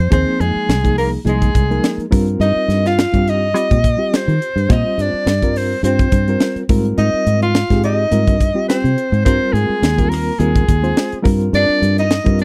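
Intense and driving, this excerpt of electric jazz fusion moves in 4/4 with a light sixteenth-note swing, over a dry, close studio sound in a 1970s style. A breathy soprano saxophone carries the melody up front with vibrato, subtone and a soft attack, while a dark, clean hollow-body jazz guitar plays a picked second line in the background and a reedy electric piano with fast tremolo fills in the harmony. Underneath, a round, foam-muted fingered bass and a crisp, polished drum kit with a high-tuned snare and punchy kick sit forward, moving through chords from Fm7 to Gm7.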